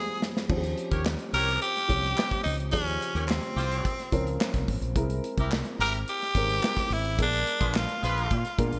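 A straight 4/4 groove opens with a drum fill from the gated-reverb studio kit, whose tight kick and smooth, rolled-off cymbals settle in as the round, punchy fretless bass joins at 0.5 seconds in this upbeat, urban slice of polished 1980s jazz-funk pop. Up front, a raspy, gritty tenor saxophone carries the melody with vibrato and scooped notes, while a dark, boxy baby grand piano with subtle chorus comps through rich extended chords like G7b9 and Eb13. A distant, roomy horn section adds a second line from 0.9 seconds, and hollow group handclaps sit far back in the bright digital mix.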